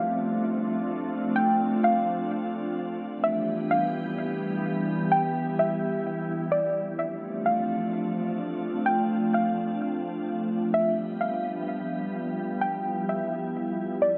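A glassy FM pad and a soft, round pluck melody open together in this ethereal, hazy half-time hip hop excerpt, the up-front pad holding slow-blooming chords through ensemble chorus and its own reverb. The darker pluck, detuned and wave-folded, sits up high with chorus, a low-pass filter and delay, its notes decaying after a fast attack. A huge ambient reverb bathes the scene as the harmony drifts from Dm7 to Em7, then shifts to Dm9 at 6.8 seconds before returning to Em7.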